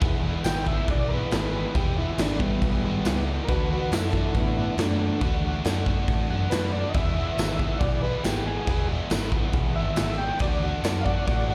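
Driving straight 4/4 at 139 BPM, a raw garage drum kit pounds out kick, snare and crash cymbal, its punchy kick and medium-tuned snare sitting up front with a saturated, gritty sound in a bright, pumping stone room. This swaggering, rowdy garage rock cut from a longer piece sits in E mixolydian, moving between E and D chords. An overdriven picked electric bass growls low beneath a biting, double-tracked guitar riff carrying slapback echo. From 0.4 seconds an overdriven transistor combo organ takes a reedy, lightly vibrato-tinged solo across the whole stretch, while a second, mellow and clean combo organ holds very quiet sustained chords underneath. A jingly tambourine rattles in the background, and the whole performance comes across like a live gig heard through a club PA, soaked in room reverb.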